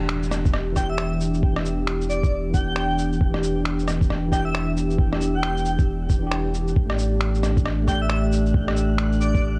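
A muffled, thumpy electronic kick drum sits up front in this ghostly, wistful future garage excerpt at 135 BPM in E minor, entering at 0.5 seconds with overdrive after a deep, round sine sub bass that plays from the start and pitched-down, overdriven finger snaps, shaker and rim click that come in at 0.1 seconds, all over a swung 16th-note feel. A clean tine electric piano with tape echo, sidechain pumping and low-pass filtering shares the harmony with a warbling, nostalgic tape-like pad in the background, moving from Em7 to A7sus4, while an airy, dreamy lead with chorus, phaser and vibrato carries the melody from 0.8 seconds. A breathy, wind-like tuned noise texture drifts in at 7.8 seconds, and the whole piece has a cassette-tape character in a moderate scoring-stage reverb.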